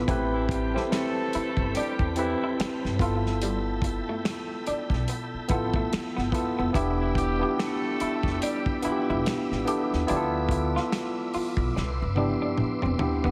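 A big, arena-like hall reverb wraps this short, introspective and sultry neo-soul R&B cut at a slow 72 BPM with a lazy sixteenth-note swing, where a worn, slightly out-of-tune tine electric piano, lightly overdriven through a combo amp, sits up front over a dry, muffled soul drum kit with finger snaps and a tight kick. A woody, growly pizzicato upright bass anchors the bottom while a smooth tonewheel organ holds sustained chords with chorus vibrato. Tucked in the background, a slightly broken-up, picked guitar through a small old amp carries a second line with chorus and slapback echo, and a clear, vintage horn section adds tight stabs from 0.3 to 9.2 seconds before the drums close with a fill from 11.7 seconds as the chords move from Am9 to Cmaj9.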